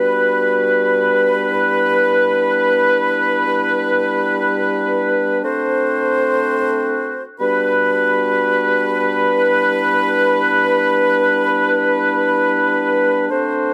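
A moderate spring reverb and the ambience of a small room give this hip hop excerpt a dreamy, blissful glow. A mellow woodwind section plays alone from start to finish, close-miked and up front, tight in the classical style with a light vibrato. Its lines move over the chords Gmaj7, Em7 and D7 before settling back through Gmaj7 and Em7.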